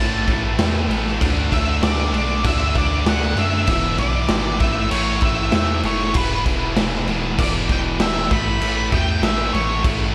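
Light reverb and a small-room ambience frame this short, dark and brooding cut from a quiet-loud alternative rock piece, moving at 97 BPM in a straight 4/4. An octave-fuzz lead guitar carries the melody as a solo between B4 and B5, its picked, murky tone coloured by distortion, slapback echo and digital delay. Beneath it, three rhythm guitars play riffs: a crunchy overdriven part and a tight distorted one with its own slapback echo, both in the background, and a scooped, double-tracked high-gain part sitting very quiet in the mix. A deep sub bass with a mellow sine body and a pitch-drop attack holds the low end. A raw garage drum kit, up front with a punchy kick, a medium-tuned snare, crash cymbal and a rolled-off top, enters at 0.3 seconds. The harmony moves from A5 through D and E5 before settling on Asus2 at 8.3 seconds.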